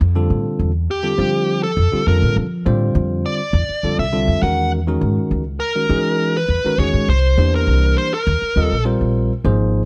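Soaring and bright, this electric jazz fusion excerpt moves at a straight 102 BPM in 4/4, with a woody, growly pizzicato upright bass sitting up front from the start. A bell-like tine electric piano joins almost at once as accompaniment, under chords such as Fadd9, E69 and C9, while a dark, smooth lead guitar carries the melody from 0.9 seconds, its overdriven picked tone coloured by slapback echo. The sound is dry and close, with small room ambience giving it a 1970s-style studio feel.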